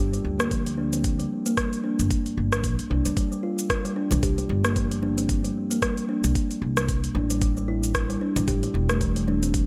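A 113 BPM groove in 4/4, swung on the 16ths, drives this warm, hypnotic organic downtempo excerpt: a knocking electronic kick enters at 0.5 seconds beside an afro-pop kit of metallic hi-hat, rim click and shaker, both re-recorded in a large room, under an up-front, mellow kalimba with a hollow, ringing tone playing arpeggios through digital delay, a woody pizzicato upright bass with tube saturation and sidechain pumping, and very quiet, close and dry congas played with hard hands from 4.1 seconds, set in light small-room reverb.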